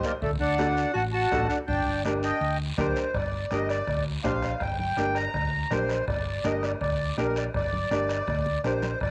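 A reedy, sweet accordion with light tremolo tuning leads this danceable, fiery cumbia excerpt at 164 BPM in G minor, joined by a bright, subtoned clarinet second line that drops out at 2.6 s, a clear, woody upright piano with short sustain, a round, dark hollow-body electric bass, a distant soft-beater bombo, a raspy close guiro and thin-skinned congas in the background, all captured as a home cassette recording with light plate reverb on the accordion, clarinet and piano and a drum fill at 8.3 s.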